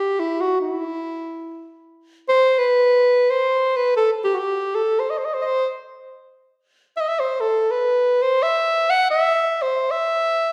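A wet, reverberant hall surrounds a close-miked alto saxophone that sits up front, its warm, classical-style tone ringing into the room's 1.4-second decay. This fiery, virtuosic Balkan folk passage unfolds in free time, the saxophone playing entirely alone from start to finish across its 10.5 seconds. It is a brief cut from a longer piece, giving a glimpse of a soloist in full flight.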